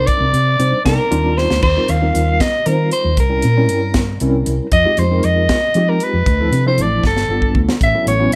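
The recording has a light reverb, and this short cut from a longer electric jazz fusion piece feels intense and slick in a straight 6/8. Up front, a growling soprano saxophone carries the melody with a raspy, vintage edge, vibrato and scooped notes, set in plate reverb. Beneath it, a worn, slightly out-of-tune tine electric piano plays through a combo amp, colored by fast tremolo and analog chorus. A fingered short-scale hollow-body electric bass adds a dark, round, amped low end. From 0.1 seconds, an airy, polished fusion drum kit in a studio room, with a high-tuned snare and punchy kick, drives from the front, adding fills at 1.4 seconds and again from 7.0 seconds. The harmony moves through rich chords such as Cm9, Eb69, C7b9 and Fm9 before closing on A69.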